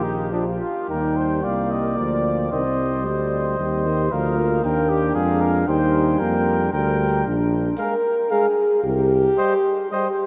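A drenched, cathedral-sized reverb surrounds this noble, triumphant brass quintet excerpt in a rubato three-beat metre, with the chords moving from Bb through Eb, Cm and Bb7. A mellow trumpet with light vibrato and a smooth top carries the melody over a close-miked, warm flugelhorn second line, while the French horn and a distant, roomy trombone in the background fill out the accompaniment. Up front, the tuba anchors the bass with a touch of vibrato until 9.3 s, and the horn carries on alone to the cut at 10.3 s.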